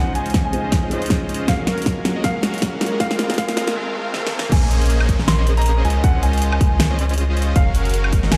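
Future bass with a dreamy, lush mood, moving in a swung half-time feel through rich chords from Dbmaj9 to Gbmaj9 and Fm7/Ab, this excerpt from a longer piece opens on a build-up where a clear grand piano sings a long-sustaining melody over a soft, felt-muted upright piano, a very quiet breathy pad and a brief touch of ringing, thumb-plucked harp. A fat, warbling polysynth with a bright, detuned sawtooth edge carries the riff through a filter sweep, while a deep, thick sub bass with tube saturation sits up front, both pumping against the sidechain along with the pianos and harp, which also trail delay. Drum fills from a pop kit with a fat snare, warm hats, crash and woodblock push the build, joined by a punchy layered electronic kick and faint risers and downlifters. After a short break, the drop lands at 4.5 seconds on Bbm11, where the upright piano drops out and the harp returns in the background with arpeggios. 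The whole mix carries a large studio reverb and the roomy sheen of a big sound system in a bare space.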